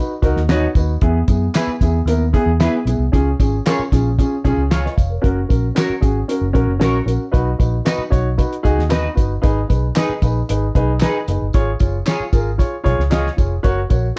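A mellow, up-front baby grand piano opens this joyful excerpt of uptempo 1960s-style soul in B major at 114 BPM, moving through a progression from B through E, C#, F#, G#m and C# before arriving on F#. Almost at once a round, punchy, foam-muted electric bass and a cloth-damped drum kit join in, the kit dry and thuddy with a fat snare, tight kick and rolled-off top, while tambourine and group handclaps sit quietly in the background. Clean, picked electric guitar stabs coated in lush chorus arrive at 0.5 seconds, and the whole piece has a dark, warm production with light reverb.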